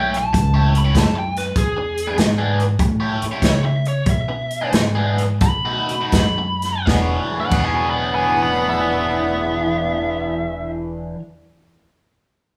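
Electric blues shuffle in E mixolydian, rollicking yet laid-back, cut from a longer piece and swinging in 4/4 at 78-98 BPM as it slows between 1.6 and 6.9 seconds. A biting overdriven lead guitar carries the melody over a picked, phaser-tinged rhythm guitar riff, a woody, thumpy pizzicato upright bass and a natural acoustic drum kit with punchy kick, medium-tuned snare, hi-hat and crash that stops at 7.7 seconds, while a bright, jazz-style tenor saxophone with soft attack and vibrato enters on a second line at 6.9 seconds, all captured as a band playing live in a small room with light reverb.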